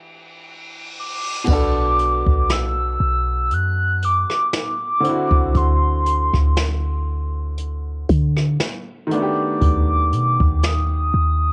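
A hollow, woody clarinet-like synth lead with chorus and vibrato carries the high melody in this moody, longing contemporary R&B excerpt, entering at 1.0 seconds over a clear, intimate baby grand piano whose action noise can be heard. A reverse cymbal opens the excerpt, then at 1.5 seconds a deep, boomy 808-style bass and an up-front jazz brush drum kit with dark cymbals join in a lightly swung groove. Cassette-tape grain on the piano, lead and drums, along with the home-recording ambience, gives a hazy, lo-fi character as the harmony moves from Em9 through Bm7 and D9 to B7alt/D#.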